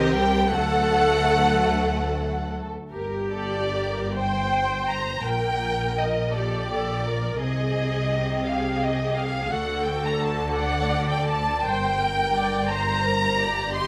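An up-front, lush violin section with soft attack carries an expressive second line spanning A3 to C6, beside a smooth, close violin melody, in this melancholic, solemn slow romantic movement for string orchestra, cut from a longer piece in G minor and 6/8 at 46-58 BPM in dotted quarters, played with rubato. Intense violas fill in the accompaniment while rich cellos and even double basses hold the bass, with all five bowed sections sounding together from 0.0 to 13.9 seconds as the harmony moves from Cm7 and D to Gm, Ab/C and back to Gm. A moderate large studio reverb lends the ensemble a spacious, rounded glow.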